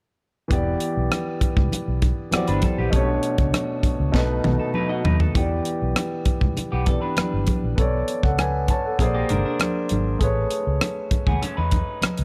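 A tight funk drum kit sits up front in this smooth, silky stretch of lush 1970s-style soul in E minor, its high-tuned snare and tight kick sounding dry, airy and polished at 99 BPM in a straight 4/4, with hi-hat, rim click and toms filling out the kit. A concert grand piano, also up front, carries the accompaniment with an open tone, deep low end and long sustain, moving through chords such as Em7, Bm9 and Amaj9. Beneath it, a vintage muted fingered electric bass gives a dark, round and punchy foam-muted line, while congas with thin skins and soft hands add a bright, compressed and saturated texture in the background. From 2.3 s an electric guitar through a small old amp plays a picked riff, twangy and slightly broken-up with a lo-fi edge. A drum fill from 4.1 to 5.4 s leads into a second section, and the whole excerpt sits in a small room with light reverb and a dark, warm production.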